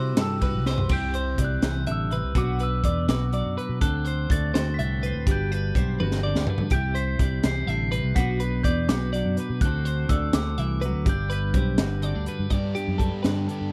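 Bright and intricate, this excerpt of math rock and midwest emo moves at 83 BPM in a straight 6/8, settled in G major. A soft, bell-like glockenspiel struck with rubber mallets carries the melody high above, its ringing tone doubled by a slapback echo until 12.3 seconds. Two clean, twangy, picked twelve-string electric guitars fill the middle, one playing accompaniment chords and the other compressed arpeggios, while a dark, round fingered bass sits up front. The crisp fusion kit sounds gritty and saturated in a small, pumping room, with a high-tuned snare and punchy kick, and fills at 0.7 seconds and again around 6.0 seconds. The chords cycle through Cadd9, Bm, D7 and Gmaj7 before landing on Gmaj9 at 12.5 seconds, where a biting, double-tracked overdriven guitar riff enters for the closing moments.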